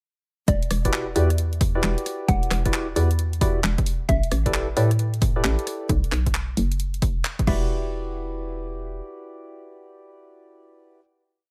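Skippy and late-night, this short two-step UK garage piece in E minor moves at 133 BPM with a swung 16th feel. It is built on an overdriven, punchy electronic kick up front, a layered garage kit of skipping hats, rim clicks, handclaps and a crash, and a hollow, bouncy FM bass line that knocks in syncopation until 9.0 seconds. Dark, close-voiced organ stabs with chorus, 12-bit sampler grit and digital delay punctuate the Em9, A9sus4 and B5 changes. A woody, round mallet-like synth pluck repeats a mellow riff through chorus, phaser and dub echo until 4.4 seconds. It returns at 7.5 seconds, just before the groove gives way at 7.7 seconds to a final Em9 hit that rings in a digital ambience until 11.0 seconds.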